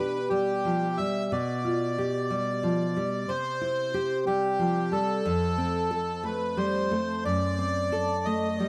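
In a rubato 6/8 sway, this serene, lyrical romantic duo fragment sets a reedy, dark bandoneon melody touched with tape echo up front over fingerpicked, full-bodied nylon-string guitar accompaniment with audible finger squeak, both playing throughout the 8.7 seconds in a dry, close 1970s-style studio sound with light reverb as the harmony moves from G/B through C and F to an F#dim7.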